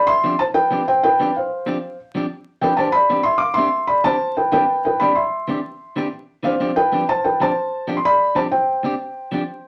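A straight 12/8 lilt at 126 BPM carries this sunny, carefree highlife fragment in C major, cut from a longer piece. Up front, a felt-muted upright piano sings the melody with a mellow, intimate, vintage tone, while a bright, slightly broken-up electric guitar sits lower in the mix with compressed, picked accompaniment. The harmony moves from G7sus4 to Cadd9 at 2.8 seconds and back to G7sus4 at 6.6 seconds, set in a wet studio ambience with a veil of vinyl crackle.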